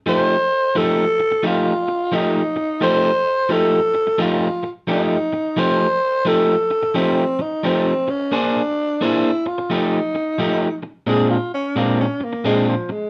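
Blues with a swaggering, soulful mood and a loose swing feel, cut from a longer piece. A growling tenor saxophone carries the melody up front, its breathy subtone, raspy grit and scooped notes softened by a mellow vibrato and a smooth top end. Beside it, a picked electric guitar sits at the edge of break-up, playing a riff with a warm, slightly broken-up tone that is also placed up front. The harmony moves between dominant ninth chords, and at 11.1 s the saxophone steps into a jazz-style solo as the piece shifts to a new section. The guitar drops out at 12.9 s, and the saxophone carries on to the close at 13.1 s. The band plays live in one room, with a moderate studio ambience around them.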